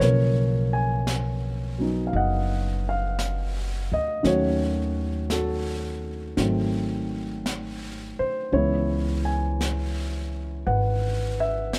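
An intimate, smoky jazz fragment, cut from a longer piece, unfolds at an unhurried pace with a lilting swing on the eighth notes. The mellow grand piano sits up front, laying down accompaniment chords that move from Bmaj9#11 through D#m7b5 and G#7b9 before settling on C#m7. Beside it, the acoustic upright bass is plucked pizzicato on steel strings, sounding woody and growly and placed close to the listener. A jazz drum kit, played with brushes in a small room, stays well in the background, its high-tuned snare and hi-hat adding a soft texture. All three parts play together from start to finish across the 11.8 seconds, in a dry, dark, warm production with little reverb.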